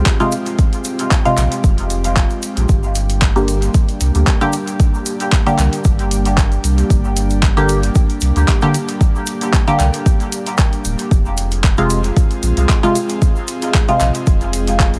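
A layered electronic kick drives this meditative, nocturnal dub techno at 114 BPM in 4/4 with a light 16th-note swing, joined by handclaps and hi-hat from a tape-warm deep house kit soaked in dub echo and a grainy egg shaker in the background. A round sine sub bass with tube saturation sits up front beside muted sawtooth chord stabs run through chorus, phaser, cassette tape and dub echo, while an airy, breathy pad holds sustained chords, with the pad, bass and stabs all carrying sidechain pumping. In G phrygian, the chords move from Fm to Gm at 2.7 seconds and back to Fm at 11.1 seconds in a dry mix cut from a longer piece.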